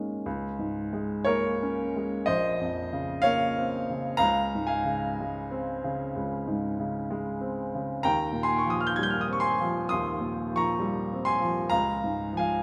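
A single Db5 rings out at 0.3 seconds on a baby grand piano, opening this brief passage cut from a longer impressionist solo piano piece in Db major. The mood is serene and luminous, moving at a slow, rubato pace of roughly 57 to 68 BPM in 4/4, with the time bending freely. The piano is the only voice, and its tone is warm and natural, placed up front and ranging from Bb1 up to Ab6. The harmony drifts through colourful chords, from Bbmadd9 to Dbmaj7 at 4.2 seconds and an Eb69, before settling back on Db at 11.7 seconds. A moderate recital hall reverb lends the sound a gentle, airy glow around the instrument.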